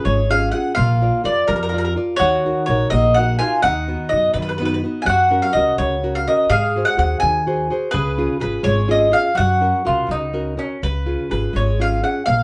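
In a 6/8 at 84 dotted-quarter beats with a straight feel, this sunny, lively Italian folk serenade sets an up-front, round, picked mandolin on the melody above a mellow second mandolin line that drops out at 10.8 s. Underneath, a small, bright fingerpicked nylon-string guitar carries the accompaniment while a woody pizzicato upright bass sits prominently at the bottom, moving through chords such as C#, D#m, G#7 and F#. The band plays live together in one room with moderate studio ambience, and the recording is cut from a longer piece.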